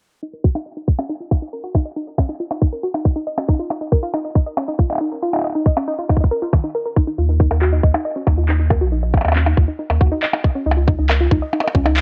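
A warbly, detuned pluck spins wave-folded arpeggios through a filter sweep, chorus and tape echo in this eerie, cerebral IDM excerpt, set over a tight, up-front electronic kick and tape-softened percussion blips and handclaps trailing analog delay, and a round, deep sine sub bass joins at 7.2 s, all inside a hazy cassette home recording with light digital ambience.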